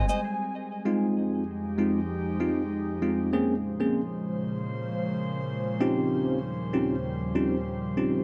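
This afrobeats excerpt, cut from a longer piece, moves at 97 BPM in a straight 4/4 in F minor, with a hypnotic, smooth mood. A jazz flute with a metallic, vibrato-tinged tone opens with a brief tongued note on Ab5 that lasts only until 0.6 seconds, trailed by analog delay. Beneath it, an airy, breathy pad holds sustained chords from Eb2 to C5 throughout, its slow-attack, detuned texture thickened by chorus, a noise layer and a ring-modulated edge. At 0.9 seconds a bell-like tine electric piano enters with clean, direct accompaniment between Ab3 and Ab4, sitting up front in the mix. The harmony moves from Abmaj7 through Fm7 and Bbm9 to Eb13, and the gritty hardware recording, touched by transformer saturation, sits within a moderate plate reverb.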